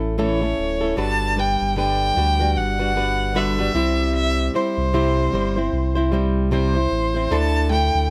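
Acoustic pop with a sunny, heartfelt mood at 76 BPM in G major with a light sixteenth-note swing, where a boxy, fingerpicked flamenco guitar and a deep, full sub bass with octave carry the chords from A through Gmaj7 and C to Dsus2, while a single bowed violin with vibrato and a smooth, focused top enters at 0.2 seconds to sing the melody, all three parts up front in a dry, close sound.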